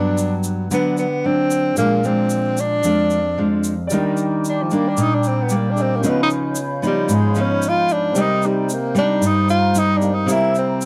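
A straight 4/4 bossa nova groove at 113 BPM sets a sunny, sophisticated mood in this short excerpt cut from a longer piece. A grainy, bright tube shaker with a compressed, saturated edge enters at 0.2 s, while an up-front nylon-string guitar, fingerpicked in a classical style, carries the accompaniment through chords moving from Gmaj7 and Bb7 into Ebmaj7, Db9, Cm7 and C7. A mellow tenor saxophone sits up front with the melody, its jazz-style phrasing marked by vibrato, subtone, scooped notes and a smooth top, and from 3.9 s, where the key settles in Eb major, it takes a solo. Further back, a warm concert grand piano adds intimate, natural support, with audible action noise and deep bass. From that same point, an airy, hollow flute ensemble holds straight-tone chords with a soft attack and rolled-off highs in the background. Close, detailed microphones and light reverb keep the sound clear and present.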